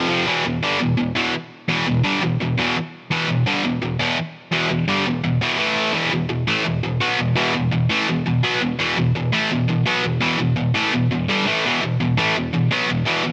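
Epic and relentless, this metal fragment races along at 169 BPM in straight 4/4, in E minor with a tuning of A4 = 435 Hz. A lone distorted electric guitar carries the whole passage, its bright, overdriven, picked tone double-tracked and set up front, ranging from E2 to B3 under a light reverb. It opens on an E minor chord, touches A5 at 5.6 seconds, and moves into a new section on E5 at 5.9 seconds, running to 13.3 seconds.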